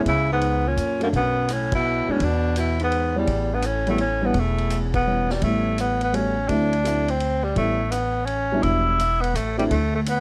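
A dark, mellow upright piano and a woody, thumpy pizzicato upright bass open this sophisticated excerpt of small-group swing and bop jazz in a swung 3/4 at 168 BPM, where an intimate, whispered tenor saxophone carries the breathy melody up front, a clear baritone saxophone with light vibrato adds a forceful second line until 5.1 seconds, and a vintage drum kit with punchy kick, medium-tuned snare, hi-hat, ride cymbal and a rolled-off top sits lower in the mix, with band accents landing at 1.7 and 4.9 seconds in a warm production with light reverb.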